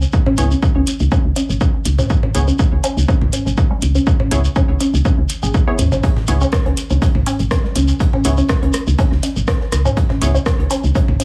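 A lightly swung groove drives this quirky, sparse minimal techno excerpt, built on a punchy, overdriven electronic kick up front, a round, woody FM bass pumping against it, a juicy, squelchy blip pluck riff with phaser, tape echo and cassette grit, muted dub chord stabs with chorus and 12-bit sampler crunch, a booming analog drum machine's congas, rim clicks and toms, a house kit's metallic hats and rim clicks, and a grainy, close shekere, while a distant, high-passed arena kit adds hi-hat and snare from 6.0 s, all in a small, fairly dry room.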